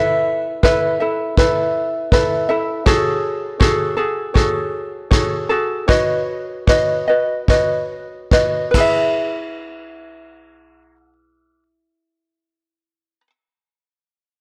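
Acoustic pop with a sunny, easy-going mood, set in E major in 4/4 at a relaxed 69-81 BPM with a light sixteenth-note swing. A fingerpicked ukulele carries the accompaniment throughout, sitting up front with a warm, light tone as it moves through Asus2, F#madd9, Badd9 and E. A vintage brush kit joins at 0.6 seconds and plays until 9.0 seconds, its dark cymbals, punchy kick and rolled-off top giving the groove a soft, close feel, with crash cymbal accents and a slightly clipped snare. The tempo slows from 2.9 seconds through the opening section before a brief second section, where the ukulele carries on alone. A moderate plate reverb surrounds the parts, and the overall recording is blown-out and overdriven, lending a gritty edge to this cut from a longer piece.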